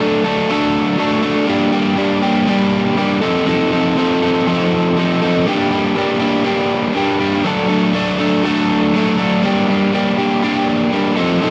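Rock in G minor at 121 BPM, this short excerpt cut from a longer piece has a cool, bittersweet mood, with a lone overdriven electric guitar playing throughout its 11.5 seconds. The picked guitar sounds bright and double-tracked, compressed and up front, with a digital delay trailing its lines as the harmony moves between D/F#, Gm and F7. A dark production and moderate studio ambience surround the guitar.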